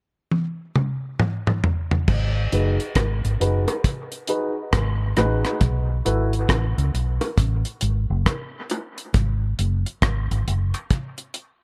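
A round, punchy, foam-muted electric bass anchors this hypnotic, deep dub reggae excerpt at 68 BPM in G# phrygian with swung sixteenths, entering at 2.1 s after a dry, smooth acoustic drum kit with a tight kick opens with a fill, while a dark, woody upright piano places mellow stabs through filters and dub echo until 6.3 s, high-tuned vintage bongos played with soft hands add band-limited, echoed percussion, and the harmony moves from G#m7 to B7(no3) to F#sus2 under a filter sweep in a small room with light reverb.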